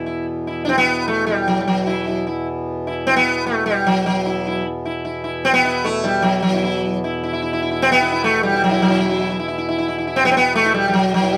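In a straight 3/4 at 152 BPM that speeds up throughout, this 11.4-second cut from a longer Indian classical piece in raga darbari on E carries a longing, introspective mood, as an up-front, buzzing sitar with shimmering sympathetic strings plays the melody over a reedy, breathing, close-miked pedal harmonium drone, the two performing live together in one room with moderate studio reverb.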